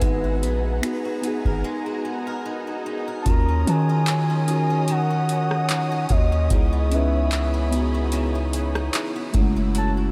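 Late-night and moody, this contemporary R&B excerpt moves at 74 BPM with a light sixteenth-note swing in Eb phrygian, drifting through Abm9, Ebm9, Dbm9 and Gbm9 chords in a dreamy mix soaked in huge ambient reverb. A booming analog drum machine with a deep kick, metallic hats, finger snaps, handclaps and rim clicks sits under a long, sine-toned 808-style bass pushed up front, while muted, warbling felt-like synth keys and veiled con sordino strings hold the harmony. A smooth, gliding portamento lead with vibrato and diffuse delay carries the melody over bright, woody acoustic guitar arpeggios, and a very quiet electronic swell sounds through a break from 1.6 to 3.3 seconds.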